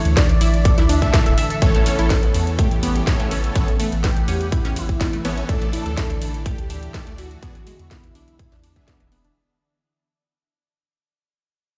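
The recording sounds as if it were played over a big sound system in a bare room with a large studio reverb, though the parts themselves carry little reverb of their own. This euphoric, uplifting progressive house excerpt comes from a drop and begins fading out at 1.6 seconds, over chords that move from Dsus2 to Aadd9, back to Dsus2 and finally to E7. A punchy, tape-tinged electronic kick sits up front, joined by a house kit of hi-hat, ride and a cracking snare re-recorded in a small room, while a deep, saturated triangle sub bass pumps with the sidechain beneath them. A thick, bold unison lead carries the melody with vibrato, a moving notch, ensemble chorus and dub echo, above a smooth, mellow analog pad that holds sustained chords in the background with chorus and sidechain pumping. Lush, detuned sawtooth plucks spin arpeggios through a digital delay, and from 1.0 seconds an airy, bright supersaw with a filter sweep adds stabs, also pumping and delayed.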